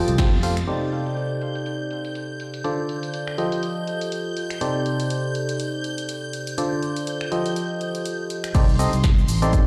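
A biting, up-front FM electric piano carries the riff through this soulful, energetic piano house excerpt at 122 BPM in C dorian, its percussive notes treated with chorus, delay and sidechain pumping over chords moving from Fadd9 through Cm69, Dm7 and F9. Behind it, a shimmering vintage string machine quietly holds bright, slow-attack violin chords in a high register, while a tape-warm analog drum machine supplies cabasa, crash, finger snaps, hi-hat and snare through low-pass filtering, with a filter sweep on the drums. After a band accent at 0.2 seconds, a round, dark fingered electric bass and a punchy electronic kick mostly sit out until the drop at 8.5 seconds, all set in a large, reverberant room.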